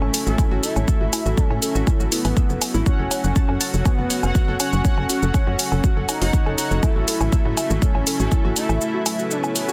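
A straight 4/4 pulse at 121 BPM drives this hypnotic, dark slice of melodic techno, cut from a longer piece. A punchy, layered electronic kick sits up front from 0.4 to 8.4 seconds, over electronic woodblock, shaker and warm hi-hats. A tight sequencer bass with a sawtooth, square-wave and ring-modulated bite fills the low end with fast, decaying plucks, pumping against the kick until it stops at 8.8 seconds. Above it, a smooth, nasal synth lead carries the melody with vibrato, analog chorus and dub echo, while bold, warbling analog synth brass adds detuned, vintage stabs with a sub octave and delay. Deeper in the mix, a woody, wave-folded pluck spins percussive arpeggios through filter sweeps, delay and chorus, and a lush, bright unison pad holds slow-attack chords with sidechain pumping. The harmony moves from A6 to F#m and back to A6, all in a dense, heavily limited modern master with little reverb.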